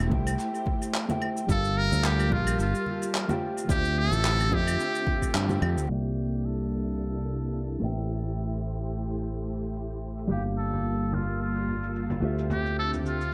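This sunset chillout groove moves at 109 BPM in 4/4 with a gentle sixteenth-note swing, in G dorian, and the mood is warm and smooth. A growly, punchy fingered electric bass sits up front, while a dark, clean electric guitar plays compressed accompaniment through dub echo, and a silky vintage string machine with slow attack and ensemble chorus holds sustained chords in the background. A deep, layered electronic kick drives the first half until 5.3 seconds, where the band hits an accent. Gritty, overdriven claves, cabasa and handclaps with tape echo carry on throughout, and very quiet ringing congas add hard-handed acoustic color. A buzzy, thin trumpet with a metal mute enters at 1.5 seconds, playing a jazz-style solo line with light vibrato and dub echo. The echo-heavy mix has moderate spring reverb and digital ambience, and a filter sweep runs from 5.9 seconds as the chords cycle through Am7, Gm9, Dm11 and C13.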